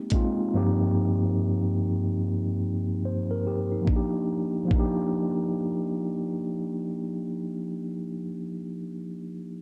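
A relaxed 72 BPM groove with swung sixteenths opens this cosy, nostalgic lo-fi hip hop fragment in Eb major. The dusty sampler-style kit of hi-hat and thumpy kick sounds compressed and gritty, as if re-recorded in a small room; it drops away at 0.5 s, returns at 3.9 s and plays until 5.0 s. A mellow tine electric piano, warm, clean and low-pass filtered as though heard through built-in speakers, carries the harmony throughout from Abmaj7 to Eb6/G and then Ebmaj7, sitting up front alongside the drums, while light reverb and a dry, gritty cassette-tape hardware character give this cut from a longer piece its homespun feel.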